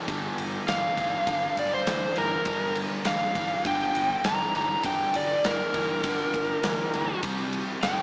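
An up-front overdriven slide guitar carries a dark, brooding melody from 0.7 seconds over a double-tracked semi-hollow guitar riff with slapback echo, a round foam-muted bass in the background, and a huge arena drum kit with a punchy kick and bright ride cymbal in this smoky G minor blues rock and southern rock excerpt at 101 BPM. Set in a wet concert hall reverb, the harmony moves from Gm to C5 at 7.2 seconds.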